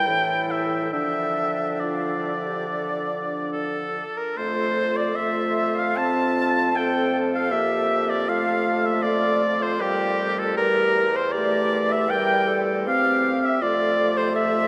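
This classical excerpt is a slow, romantic movement for wind quintet, yearning and melancholic in mood, with a flexible rubato pulse in four. The oboe carries the most present voice, a smooth-topped, vibrato-rich second line that sits up front, while the concert flute sings the pure, expressive melody softly in the background. Beneath them, a clear clarinet and a mellow French horn with light vibrato fill out the accompaniment, and the bassoon anchors the bass, both horn and bassoon sounding distant and roomy. The harmony turns from minor to major at 4.4 s and settles back on that major chord near 13.6 s. All five instruments play throughout the 14.7 seconds, bathed in a long, wet cathedral reverb that makes the ensemble feel suspended in a vast, echoing space.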